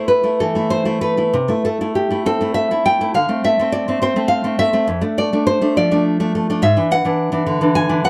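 A solo nylon-string guitar opens on an A chord, fingerpicked and placed up front in a dry, close studio sound with a touch of light reverb and the feel of a 1970s recording. This romantic classical piece moves in a lilting three-beat metre, its uneven beats stretched and pulled by a free rubato. The harmony travels from A to Am over C, then to D at 3.2 seconds and Dm over F, before settling on E7 with G# in the bass at 6.6 seconds. The instrument spans from a low F to a high G#, and its acoustic tone carries small finger squeaks along the strings. The mood is sunny and warm throughout this brief portion of a longer piece, which runs 8.1 seconds.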